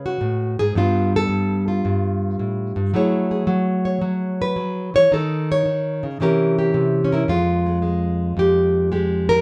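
A fingerpicked nylon-string guitar carries this short solo jazz piece on its own, sitting up front with a bright, full-bodied acoustic tone and the crisp sparkle of fresh strings. The mood is swinging yet moody, with a clear swing lilt on the eighth notes in a steady four. The classical-style playing ranges from low F2 up to C#5, opening on a high C#5 before moving through rich harmony such as G9, F#m9, C#sus2 and C7b9. Around 7.3 seconds the passage shifts into a new section, landing on Fmadd9 and continuing until the clip ends at 9.4 seconds. Light reverb and a dark, warm production frame the guitar, and the clip is cut from a longer piece.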